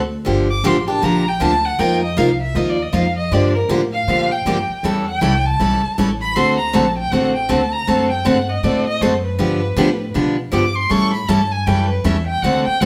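A woody, thumpy pizzicato upright bass opens this swinging, virtuosic gypsy-jazz excerpt in G minor at 158 BPM, joined at once by up-front picked steel-string acoustic guitar with audible finger squeak and then by a rich, expressive bowed violin soloing with vibrato and portamento over Gm7, F7sus4, A7, D7 and G7 changes, all captured as a live band in one room with wet studio reverb and a faint mains hum.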